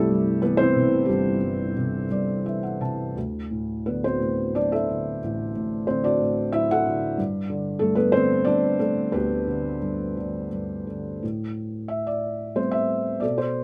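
Classical solo piano in a lyrical, bittersweet and brooding vein, this short excerpt moves in a rubato 3/4 at roughly 81-96 BPM in A dorian, tuned to A4 = 439 Hz. A felt-muted upright piano carries everything alone from G1 to A5, its thick-felt tone dark, mellow and intimate, placed up front with audible action noise and a brief fill between 1.8 and 3.2 seconds. Close, detailed microphones and light reverb frame the harmony as it drifts from Cadd9 through Dadd9 and G before settling on Am9 when a new section opens at 11.2 seconds.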